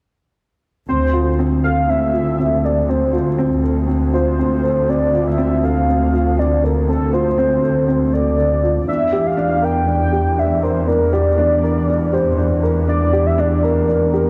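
Piano and strings electronica in D minor, this melancholic, intimate piece moves at 120 BPM in a straight 4/4, cut from a longer work. A velvety synth lead carries the melody, its smooth, sustained tone given a touch of chorus and vibrato and placed up front. Beneath it, a dark upright piano plays a woody, boxy riff with short sustain, while a lush bowed double bass section supplies the bass line with rich symphonic vibrato. All three parts enter together at 0.9 s and play through to 14.3 s, with the harmony shifting from Dm7 to Em7b5 at 8.9 s. A light, small-room reverb keeps the sound close and intimate.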